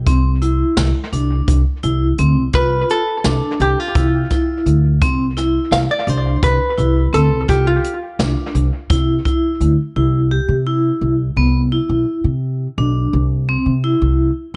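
Driving and bright, this progressive instrumental runs at 170 BPM in eighths, a straight 7/8 in C major, cut from a longer piece. A woody, pizzicato upright bass with steel strings sits up front from the start, while a ringing, metallic vibraphone struck with medium hard mallets spins arpeggios through a medium motor vibrato. A jazz brush kit with a boomy kick and medium-tuned snare sounds distant and roomy, touched with analog delay, and drops out at 9.8 s. A dark, clean, compressed hollow-body jazz guitar, also carrying analog delay, enters at 2.5 s and takes the solo over the opening F5/C harmony. At 10.0 s the music moves to a Cmaj7 section carried by bass and vibraphone. The small-room ambience gives an echo-heavy mix with a muted top end.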